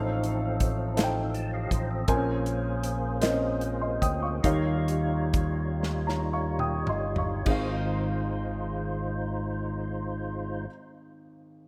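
Light reverb gives this short cut from a slow gospel piece a close, intimate sound, with the piano, bass and drums placed up front. In 6/8 and Ab major at 32-54 BPM in dotted quarters, it feels uplifting and soulful, its harmony passing from F7/A through Bbm9 and Eb9 before settling on Ab6 at 7.5 seconds. A dark, woody upright piano with audible action noise and a slightly detuned character carries the accompaniment. A fat, percussive tonewheel organ holds sustained chords colored by light overdrive, chorus vibrato, key click and a slow rotary speaker, and adds a brief fill near 1.0 seconds. A bright, amped fingered electric bass anchors the low end, while a natural country drum kit from a small room, with a tight kick, medium-tuned snare, hi-hat, toms and crash cymbal, plays a fill from 5.8 seconds as the tempo slows toward the end of the opening section, then stops at 7.7 seconds.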